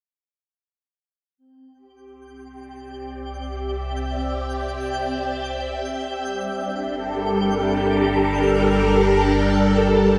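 A swirling, vintage string machine fades in at 1.4 s with sustained sawtooth chords, sitting up front under ensemble chorus, phaser and shimmer reverb, as this mysterious, expansive stretch of ambient, sequencer-driven space music moves from C to G minor at 6.2 s. A sparkling granular texture with an octave-up shimmer fades in high above it from 2.6 s. A mellow, evolving analog drone with chorus fades in underneath at 2.9 s, and the whole passage floats in free time within a vast, echoing cathedral reverb.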